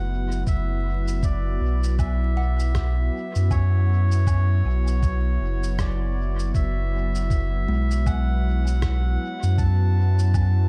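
Deep and hazy, this short ambient dub excerpt moves at 79 BPM in 4/4 with a 16th-note swing, resting on a single F#m11 chord in F# minor under an echo-heavy haze of digital ambience and vinyl crackle. A round sine sub bass sits up front with tube saturation beneath a smooth, detuned sawtooth pad treated with chorus, while a reedy, nasal melodica carries the melody and a woody kalimba plucks soft arpeggios in the background, both trailing dub echo. Electronic cabasa, woodblock and rim click enter at 0.3 seconds, washed in dub echo, followed by a muffled, thumpy sampler kick at 0.5 seconds, both re-recorded in a large room.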